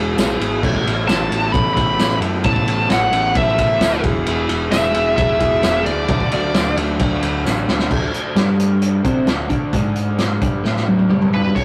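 A straight 4/4 pulse at 132 BPM drives this wistful, carefree indie rock fragment in D lydian, with a vintage drum kit up front, punchy in the kick and dark in the cymbals, and a jingly tambourine tucked behind it until 7.6 s. An overdriven, lo-fi garage guitar and a clean, compressed twelve-string electric guitar share the riff in the background over a growling, overdriven picked bass. A bluesy lead guitar, distorted and up front, sings its melody from 1.1 s, all inside a rough rehearsal-room sound with tube saturation and moderate stone-room reverb, and a drum fill carries the music into a new section at 7.9 s.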